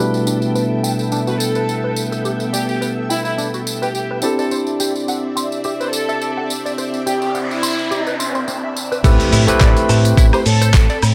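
Nu-disco at 106 BPM in A minor with a lightly swung 16th feel and a cosmic, sensual mood, this excerpt opens on a barky tine electric piano with tape echo, lush string-machine chords pumping under sidechain, a twangy, filtered clean guitar riff and tambourine, while a dark, woody violin section carries the melody from 1.3 seconds over G69/B and Cadd9 harmony. A noise sweep builds from 7.2 seconds into a drop at 9.0 seconds, where an impact lands on Am9 and a warm envelope-filtered fingered bass, a thumpy electronic kick and a gritty, dusty sampler-style kit with filtered hats, cymbals, snare, cabasa, handclaps and woodblock all arrive together under light reverb.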